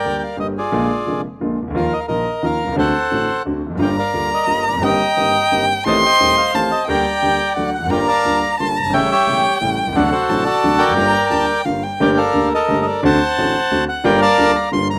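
A reedy, dark bandoneon carries the melody over a deep-bassed, vintage-toned concert grand piano from the opening, setting a sultry, melancholic tango in G minor at 176 BPM in 3/4 with a rubato feel. At 3.8 seconds a single bowed violin joins with a second line, its close, expressive sound shaped by vibrato, portamento and a soft attack, before it drops out at 12.0 seconds as the passage moves into a new section. Light reverb and a rough home-demo mix keep the three up-front parts intimate in this 15-second cut from a longer piece.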